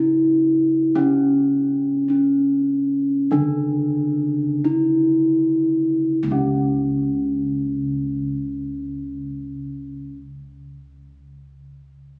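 A straight, even pulse in four moves slowly through this short excerpt of Javanese gamelan, gradually slowing over its first 6.1 seconds before a new passage begins. The mood is stately and shimmering. A bronze metallophone carries the melody up front, struck with padded disc mallets for a mellow, soft, smooth tone. Beneath it, a second metallophone plays a lower accompaniment with a wooden mallet, its ringing sound dark and smooth and set further back. Bossed gongs supply the bass with a round, beating, full voice, close-miked and dry, and all three parts sound together from the start to 10.1 seconds. The whole is heard through a concert-hall-like reverberation, captured on a phone in the room.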